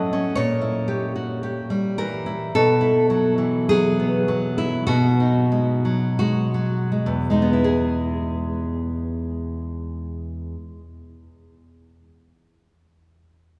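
A solo nylon-string guitar opens the passage, fingerpicked in a classical manner and placed up front, with a warm, acoustic tone and fresh strings. This romantic piece in E major moves at a slow 40 to 60 BPM in 4/4, with a rubato feel and a nostalgic, tender mood. The guitar ranges from a low E2 to D#5. Through the first 7.7 seconds the tempo slows as the harmony drifts from A#dim7 through B7sus4 and B6 before settling on E. The guitar stops at 11.1 seconds, while the second section continues to 13.3 seconds. A cathedral-like reverb with a long 4.6-second decay surrounds the instrument, giving it the resonant air of a church or concert hall in this passage cut from a longer work.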